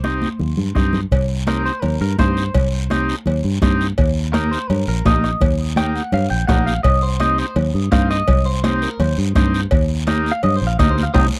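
This dry, close recording has the feel of a 1970s studio session, with little reverb. It holds a danceable, passionate cumbia in C minor at 167 BPM, cut from a longer piece. A drum fill opens the music, and at 1.1 seconds cowbell and timbales enter with a ringing, vintage metal tone. The clean electric guitar then takes a solo through to the end, sounding bright, twangy and compressed, with spring reverb on its picked lines. Beneath it, a buzzy combo organ with light vibrato sits up front, and a round, foam-muted fingered bass carries a dark low end, both moving between Cm and Eb. Soft-beater bombo, thin-skinned congas in the background and a raspy guiro drive the groove until a band accent at 11.2 seconds.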